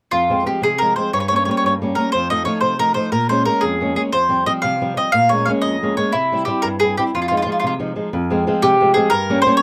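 Italian folk in 6/8 at 120 BPM, this short excerpt in F minor feels romantic and passionate, with a picked mandolin carrying the melody in round, doubled strings up front. Beneath it, a dark, fingerpicked flamenco guitar supplies the accompaniment, both instruments sounding from 0.1 to 9.6 seconds. Close, detailed miking and a touch of light reverb keep the pair intimate, while the harmony moves from Fm through Gdim, F7 and Bbm7 to a C chord before returning home.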